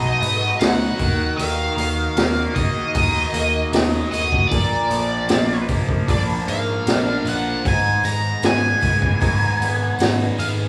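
A straight 4/4 beat from a gritty, boomy-kicked garage drum kit with a high-tuned snare and hi-hat sits up front from 0.2 s, joined by a very quiet, jingly tambourine, while a round, punchy picked electric bass anchors this dark, hypnotic psychedelic rock passage cut from a longer piece. A double-tracked, compressed fuzz guitar riff run through phaser grinds beneath an up-front octave-fuzz lead guitar melody with wah, and a vintage, buzzy combo organ with light vibrato holds faint sustained chords over a B, Ebm, Bb, Abm progression. The band sounds like it is playing live in one room, with moderate large studio reverb around it.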